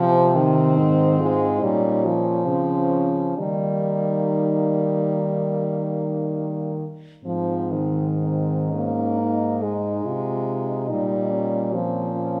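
A mellow, roomy French horn carries the accompaniment up front in this lyrical classical excerpt for horn quartet in Ab major, tuned to A4 = 438 Hz, moving in a rubato 4/4 at 58-72 BPM. Beside it, a warm horn holds the bass. Two more horns sit in the background: a clear, distant one with light vibrato takes the melody, and one with a smooth top sings the second line. All four play throughout the 12.4 seconds, moving through Ab/C, Bbm, Eb and Ab before landing on Eb7/Bb, bathed in a wet recital-hall reverb.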